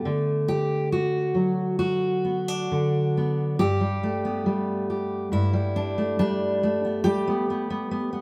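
This folk piece for solo fingerstyle guitar has a melancholic, wistful mood and a loose, rubato feel in 4/4. A single fingerpicked steel-string acoustic guitar with a jumbo body carries everything from 0.0 to 8.2 seconds, spanning G2 to G4 and sitting up front with a full-bodied tone. The harmony opens on a D6 chord and shifts to Gadd9 at 3.6 seconds, where the second section begins. A moderate stone-room reverb gives the guitar a natural, lingering air, as if captured live in one space. The instrument is tuned to A4 = 439 Hz, and this short passage is cut from a longer piece.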